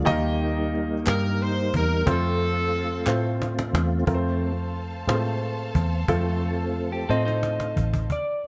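Set in a slow, straight 6/8 at 60 BPM, this uplifting, hopeful slow gospel piece sways gently over Eb and F chords, cut from a longer performance. A woody cajon with faint snares carries the pulse and plays fills at the close of each section, joined early on by crisp, close group handclaps. A round, punchy muted electric bass sits up front beneath an intimate baby grand piano with audible action noise, while a tonewheel organ holds sustained chords through a slow rotary speaker with chorus vibrato. A tight, present saxophone section carries the melody until 3.4 seconds, and from 4.1 seconds a dark, lush bowed string section adds sustained chords low in the mix. Near the end a twangy, picked electric guitar adds a second line, and at 7.1 seconds a slightly broken-up slide guitar takes the melody with slapback echo, all set in a light reverb.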